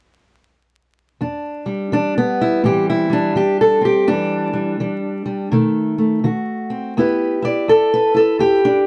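A boxy, parlour-sized fingerpicked steel-string acoustic guitar sits up front from 1.2 s, playing soulful, brooding acoustic country blues in E minor at 83 BPM with a swung 4/4 feel, moving through Em7, Am7 and B7b9 before settling on Em at 7.0 s, all in a dry, close 1970s-style recording with moderate booth ambience and vinyl crackle in this brief excerpt cut from a longer piece.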